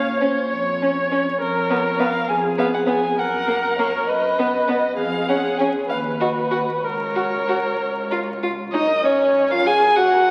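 A first violin carries the melody with soft-attacked, portamento-laden vibrato, set against an up-front, focused viola accompaniment and a smooth, even cello bass, and the second violin joins at 0.2 s with a rich, expressive line of its own. This graceful, cheerful fragment of a quick classical-period string quartet movement sways in 6/8 at 66 BPM in dotted quarters, with rubato phrasing in F# major, moving from Bbm through C#/E#, F# and B/F# before a new section settles on F# at 8.7 s. The sound is bathed in a wet concert-hall reverb and carries the crackle of a very old 78 rpm record.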